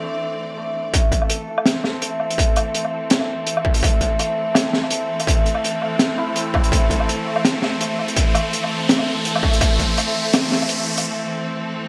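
A swung, half-time drum and bass groove drives this cinematic, spacious passage, cut from a longer piece. At 0.9 seconds a crunchy breakbeat kit of hi-hat, high-tuned snare and woodblock arrives with a distorted electronic kick, both placed up front; the kit sounds gritty and saturated, with a rolled-off top and gated reverb. From the opening, a bright studio string section holds intense, vibrato-rich bowed chords shaped by sidechain pumping and a low-pass filter. A hammered santur rings out shimmering arpeggios through digital delay, and a very quiet pulsing, detuned gated texture with chorus sounds alongside them for the first second. The passage works as a build-up: an electronic riser and swell enters at 4.4 seconds and leads into a brief break near the end, with a moderate plate reverb and 1980s-style digital production framing the sound.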